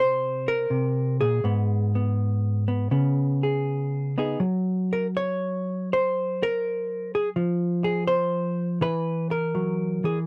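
Solo jazz on a lone hollow-body electric guitar, cut from a longer piece and lasting about 10.3 seconds, with a playful, relaxed mood. The tempo sits around 82 BPM in 4/4 with a swung eighth-note feel, though the time is stretched freely in rubato fashion. The guitar has a dark, clean, fingered tone, compressed and placed up front, moving through Cm7, Abm and Dbsus2 across a range from Ab2 to Db5. At 4.4 s the harmony falls away into a stretch free of chords before an Esus2 settles in at 8.8 s. A moderate booth ambience with a short decay keeps the sound close and intimate.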